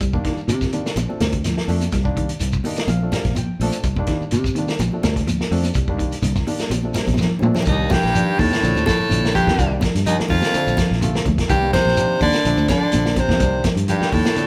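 An edgy, forceful alto saxophone takes the lead at 7.7 seconds, close-miked and up front with vibrato, joined by a raspy, gritty baritone saxophone carrying a breathy second line beneath it. This hypnotic, defiant afrobeat excerpt sits in C dorian at 125 BPM in a straight 4/4, circling between Cm7 and Bbmaj9 throughout. Before the horns arrive, the groove rests on a warm, up-front vintage drum kit with a punchy kick, a medium-tuned snare and rolled-off top, a dark, round, foam-muted fingered bass, and a clean semi-hollow electric guitar picking arpeggios in the background. A barky tine electric piano supplies bright accompaniment and plays a fill at 2.4 seconds, while high-tuned, ringing congas and a grainy shekere sit dry behind the band. A drum fill at 7.1 seconds leads into the second section, and the band plays live together in one room, wrapped in a moderate large-studio reverb.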